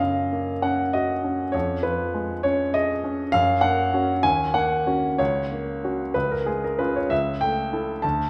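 A wet recital-hall reverb surrounds a clear, intimate grand piano placed up front, its natural tone marked by short sustain and audible action noise, as it plays a lyrical romantic character piece in F# major, unfolding in a rubato 6/8 at about 62-68 BPM through chords such as C#7/E#, D#m7 and a closing A/C#, in an 8.3-second fragment cut from a longer work.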